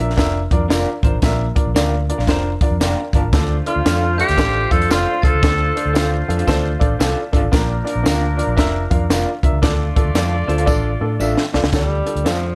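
Uptempo 1960s-style soul in D minor at 114 BPM, this short excerpt from a longer piece feels passionate and driving, with a swung 4/4 groove moving between Bb and Dm chords. A compact cocktail drum kit sits up front with a dry, high-tuned snare and punchy kick, joined by a round, foam-muted fingered electric bass and a jingly tambourine tucked in the background. A woody upright piano with short sustain comps throughout and adds fills at 2.3 and 6.5 seconds, while an electric guitar through a small old amp plays slightly broken-up, lo-fi stabs bathed in spring reverb. A breathy tenor saxophone carries the melody from 3.7 to 6.3 seconds and again from 11.7 seconds, its intimate subtone, scooped notes and vibrato set forward with plate reverb. Behind it, a mellow horn section with soft attack supplies a second line, and a bell-like glockenspiel played with soft plastic mallets rings briefly alongside the sax, before a drum fill at 10.7 seconds leads on, all within a dark, lightly reverberant production.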